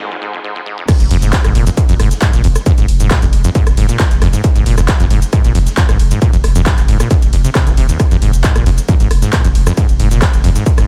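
A dry, echo-heavy mix with little reverb opens on a squelchy, resonant sawtooth acid bass riff in F minor, playing alone for the first 0.9 seconds of this cut from a longer piece of driving peak-time techno at 135 BPM in straight 4/4. At 0.9 seconds the drop lands: an up-front, distorted, overdriven electronic kick drum, layered and high-pass filtered, anchors the groove, joined a moment later by a deep, thick saturated sub bass holding F1 under sidechain pumping and a low-pass filter. The acid riff, moving between Eb2 and F3 with a fast filter-pluck attack that decays, pumps with sidechain compression and trails tape echo. A punchy, tape-warm analog drum machine adds crash and ride cymbals, handclaps, hi-hat, rim click and shaker, its hats, cymbals and percussion breathing with sidechain pumping. Far beneath, a very quiet, gritty sampler-style soul kit contributes hi-hat and a medium-tuned, overdriven snare, keeping the intense, driving mood charging through to the end.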